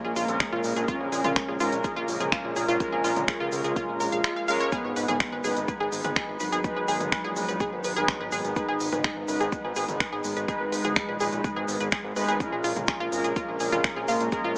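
Melodic techno at 125 BPM in G# dorian, dramatic and hypnotic, where an up-front, nasal analog pluck spins arpeggios with chorus, phaser and digital delay over a fat, saturated sawtooth bass, brassy vintage synth stabs, a soft octave-layered lead with dub echo and vibrato, a very quiet lush unison pad, deep house kit snaps, smooth hats and toms, a grainy egg shaker and a deep electronic kick, with sidechain pumping on the lead, pluck, brass and bass, a brief electronic swell at 4.1 seconds, and chords moving from A#m7 to G#m and back, all heard through a small-speaker sound with light digital ambience.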